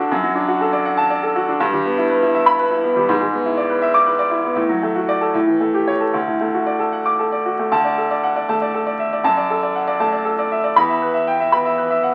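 Passionate and agitated, this short cut from a longer classical virtuoso piano study in D major unfolds in a rubato 6/8 at 80 BPM on a bright, brilliant, open solo baby grand sitting up front and ranging from D2 to D6, moving through chords from D/F# to an A7 at 5.3 seconds before resolving to D and shifting into a new section at 7.7 seconds, all heard through a moderate large-studio reverb and the crackle of a very old 78 rpm record.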